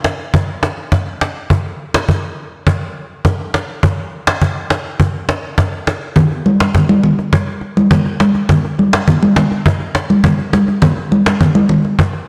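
Hypnotic and mellow, this afrobeats groove in a straight 4/4 is cut from a longer piece and built entirely on hand percussion. A woody, close cajon with faint snares sits up front from the very start, carrying the opening break on its own, with the hi-hats muted from 3.8 to 6.2 seconds. At 6.2 seconds the congas enter, their thick-skinned, medium-tuned tone sounding vintage and band-limited as they join the cajon at the front of the mix. The congas drop out at 11.8 seconds, leaving the cajon to finish the passage. A lush hall reverb gives the acoustic drums a sense of space, while the overall recording is blown-out and overdriven, lending the rhythm a gritty, saturated edge.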